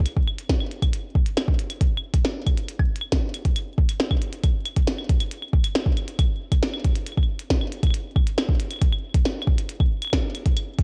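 IDM at 137 BPM in a straight 4/4, this cerebral, eerie excerpt pairs a deep, up-front electronic kick drum with a glitchy drum kit of claves, clicky hi-hats and a tiny snare treated with delay, entering at 0.1 seconds, all set in light reverb within a dark production.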